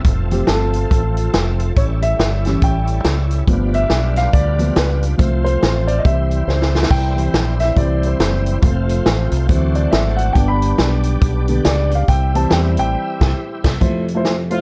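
Reverent and uplifting, this swinging uptempo gospel excerpt features a dark, mellow grand piano soloing from 0.1 seconds over sustained chords from a bright, lightly overdriven tonewheel organ with key click and slow rotary speaker and a smooth French horn section in the background. A round, punchy fingered electric bass and an up-front big-band drum kit drive the groove, with a drum fill at 6.5 seconds and a band accent arriving at 12.9 seconds. The piece closes on an Fmaj7 chord as a distant saxophone section touches in at 14.5 seconds, all set in a dark studio reverb.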